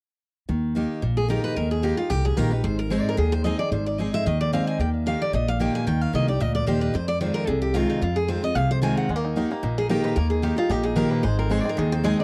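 A haunting, rustic bluegrass excerpt, cut from a longer piece, moves at a brisk 223 BPM in 4/4 with a light swing on the eighth notes. A picked steel-string dreadnought guitar and a pizzicato upright bass both start at 0.5 seconds. The guitar picks its way through chords from Eb through Ab and Fm7 on fresh, full-bodied strings, while the bass sits up front with a woody, thumpy gut-string sound. A second bright dreadnought guitar carries the melody from 1.2 seconds, set off by a tape echo that gives its lines a trailing shadow. At 9.1 seconds a mellow, twangy banjo played with fingerpicks slips in lower in the mix, adding a percussive edge to the melody in its final stretch. The sound is dry and close, like a 1970s studio session with little room around the instruments.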